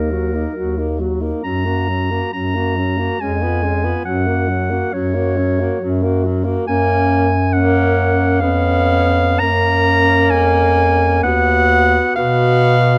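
In an unhurried 3/4 at 67 BPM with uneven, rubato beats, this lyrical classical excerpt for single-reed quartet settles into F# major from 6.7 s, as a clear, up-front clarinet sings the melody over a mellow alto saxophone second line with light vibrato, a warm, more distant and roomy tenor saxophone accompaniment, and an equally forward bass clarinet with a smooth top holding the bass, all four playing throughout with a touch of reverb and close, detailed microphones.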